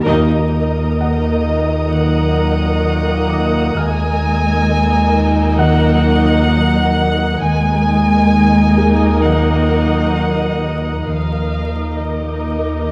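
Eerie and mysterious, this slow cinematic suspense cue at 65 BPM in Eb minor rests on a punchy, deep sub bass drone and muted double basses on Eb, with veiled con sordino violin sections carrying a melody from 1.0 s alongside a second line and a high background texture, while muted violas, cellos, woody soft-mallet marimba, a felt-muted upright piano with audible action noise, a flickering grainy pad, and a distant mellow French horn section and clear trombone section holding sustained chords all sit in a concert hall reverb under a haze of vinyl crackle.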